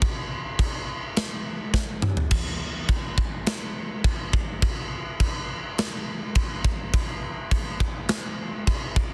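Heavy and relentless, this short metal clip from a longer piece features a tight acoustic drum kit alone, sitting up front in a big, pumping room with bright china and crash cymbals, a medium-tuned snare, a tight kick and toms, driving a half-time 4/4 groove broken by a quick fill at 1.7 seconds, all within a dense, heavily limited modern master.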